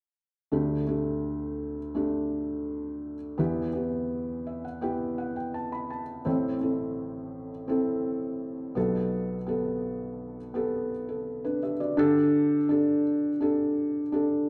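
A large studio's lush reverb surrounds this short pop fragment, captured as a live performance in one room. A felt-muted upright piano sits up front, soft, mellow and intimate, with a thick felt tone, as it accompanies over a chord progression that moves from Dsus4 through Em, Am and Gadd9/B before returning to Dsus4 at 12.0 seconds. A gentle piano fill between 4.1 and 6.3 seconds adds to the hopeful, warm mood.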